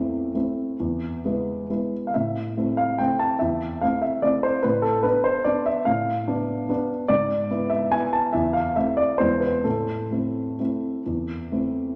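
Wistful and nostalgic, this 12-second excerpt of a classical piano waltz in A minor unfolds in 3/4 with a rubato feel between 124 and 152 BPM, a solo baby grand sitting up front with a dark, mellow, intimate tone, audible action noise and short sustain, ranging from E2 to A5 through chords like Bm7b5/A and E7/G# into a scoring stage reverb lasting 1.8 seconds.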